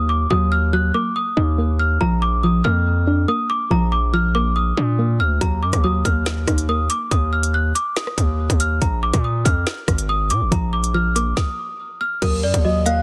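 The sound is dry, dense and heavily limited, with a cold, ominous drill mood in a half-time feel, cut from a longer piece. A worn, slightly out-of-tune celesta carries the melody up front with a bright, delicate, bell-like tone and a trail of delay, while a soft, round pluck with chorus adds a dark, gentle accompaniment beneath it, dropping out for a stretch before returning. A distorted, saturated 808-style bass growls heavy and aggressive from the start. The electronic drill kit arrives at 5.4 seconds with a hard-clipped kick, a woody snare, crisp hi-hats, finger snaps, rim clicks and a crash. A short stop comes at 11.4 seconds. At 12.2 seconds an eerie, inharmonic synth bell with chorus, phaser and delay slips in faintly in the background, and an ethereal, airy pad is barely audible in the final moment.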